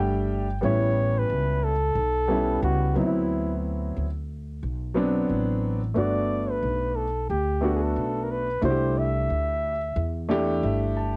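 A mellow flugelhorn carries the melody in this cool, warm hip hop excerpt, entering at 0.6 seconds with a soft attack, light vibrato and a jazz-style solo voice before dropping out at 10.3 seconds. Set at 90 BPM in 4/4 with a 16th-note swing, the piece sits in G major and moves through rich extended chords such as A9, D13, Gmaj7 and C69. A dark concert grand piano accompanies throughout, its intimate, smooth tone carrying deep bass, audible action noise and a vintage character, with short fills at the opening and again near the close. An upright bass plays pizzicato underneath, woody and acoustic with steel strings. The piano, bass and flugelhorn all sit up front, and the piano and flugelhorn carry a cassette tape coloring. Light reverb and the feel of a home cassette recording lend the whole a lo-fi intimacy.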